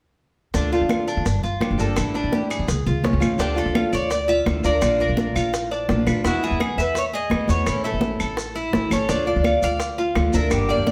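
This Cuban son in a guajira vein moves at a brisk 169 BPM in straight 4/4, set in D harmonic minor with a nostalgic feel. From 0.5 seconds a boxy archtop guitar picks an accompaniment while a bright, metallic Cuban tres plays arpeggios on its doubled strings, and a growly, thumpy pizzicato upright bass sits up front. Congas with a thin skin, tight high-tuned bongos, grainy vintage maracas and woody claves stay in the background, the hand drums played with soft hands. At 3.4 seconds a second, warmer tres takes the melody and becomes the most prominent voice, as the harmony moves from D minor through B-flat and E to A before returning to D minor. A wet studio reverb places the ensemble further back in the room.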